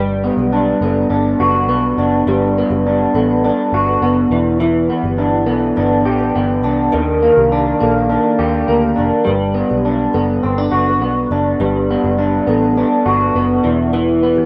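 Dreamy and laid-back, this 14.5-second indie pop and bedroom pop excerpt in G major moves at 103 BPM in a straight 4/4. A bright, twangy, slightly broken-up electric guitar through a small old amp sits up front as accompaniment with analog chorus and vibrato, over a dark, round, foam-muted vintage bass, while a woody, hollow kalimba rings softly in the background through ensemble chorus and analog delay. It is all in a rough home demo mix with light small-room reverb as the chords drift from Gmaj7 through Em7 and Ebmaj7, back to Gmaj7, before landing on E7(no3).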